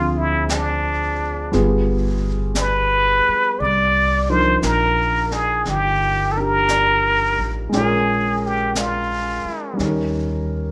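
Tender and romantic, this slow jazz ballad at 58 BPM swings gently in 4/4, with a brilliant plunger-muted trumpet up front singing the melody with wah-wah inflections, vibrato and scooped notes until 9.8 seconds. Beneath it, a concert grand with audible action noise, deep bass and long sustain voices chords moving from Dm7b5 through G7b9 and Cm11 to Bbm7 and Eb7, while a woody pizzicato upright bass anchors the low end. Brushes on snare and hi-hat enter at 0.5 seconds, sitting softly behind with a rolled-off top, all in light reverb with some lossy compression artefacts in this short cut from a longer piece.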